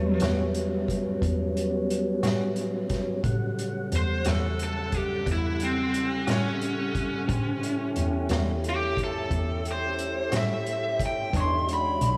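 A dreamy mix soaked in long cathedral reverb opens this excerpt of rollicking, soulful slow blues in a straight 12/8, where a biting, overdriven lead guitar sits up front and plays a picked solo throughout, from A13 to an E13 near 11.3 seconds. Beneath it, a tonewheel organ holds sustained chords through a slow rotary speaker with light overdrive and key click, while a dark, woody double bass is bowed with vibrato. A bright, twangy clean electric guitar with harmonic tremolo stays in the background, and a vintage drum kit with a punchy kick, medium-tuned snare and hi-hat plays in a pumping small room with a rolled-off top.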